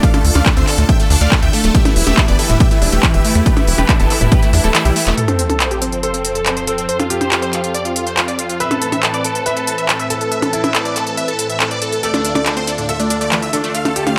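A straight 4/4 drive from a punchy, tape-warm electronic kick and an up-front techno kit of handclaps, smooth hi-hats and percussion blips opens this euphoric, emotional uplifting trance excerpt. Beneath a huge, detuned supersaw lead with phaser, delay and sidechain pumping sit a tight, driving sequencer bass, a lush, thick chorused pad and a bright unison pluck arpeggio in the background. Around a drum fill the kick and bass fall away, and at 5.2 s a sub drop hits as an intimate concert grand piano with audible action noise takes a delayed second line and a filter sweeps across the lead, until the pluck returns at 12.0 s under light reverb.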